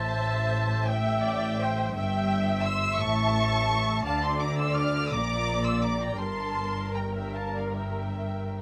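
A slow, rubato 6/8 pulse of about 43-58 BPM in dotted quarters carries this yearning, solemn excerpt of a romantic movement for string orchestra, cut from a longer piece, as muted sections play con sordino throughout its 8.6 seconds, moving through chords from Am to C/G, A, Dm7, Bb and Gm. Up front, the first violins sing the lush, veiled melody with vibrato from F5 to F6, while a second violin line and the violas, smooth-topped and soft in attack, fill in the harmony beneath. Cellos with light vibrato and closely heard double basses anchor the dark bass, all captured by close, detailed microphones in a dry room.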